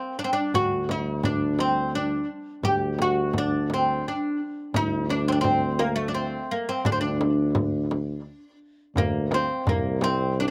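A woody, fretless oud opens this stately Persian modal piece, its plectrum-plucked double strings sitting up front as it carries the melody in a gentle three-beat metre. At 0.5 seconds a mellow tuba joins on the bass line, its soft attack, smooth top and light vibrato lending a classical poise to its low notes. A small, bright frame drum enters at the same moment, played with soft hands and captured close and dry. At 9.0 seconds a tombak slips in behind the others, its deep, vintage, band-limited tone adding weight in the background as the music moves into a new section. The outdoor recording carries little reverb, and this passage, cut from a longer piece, ends at 10.5 seconds.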